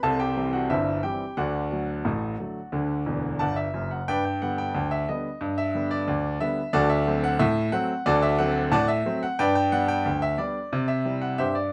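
A polished, up-front grand piano plays solo in this cheerful, playful ragtime piece, cut from a longer work, in G major at 90 BPM in a straight 2/4, spanning E1 to A5 over C, D, G, D7, G and C, with a fill from 3.1 to 4.1 seconds leading into a second section, all heard in light reverb in a rough home-demo mix.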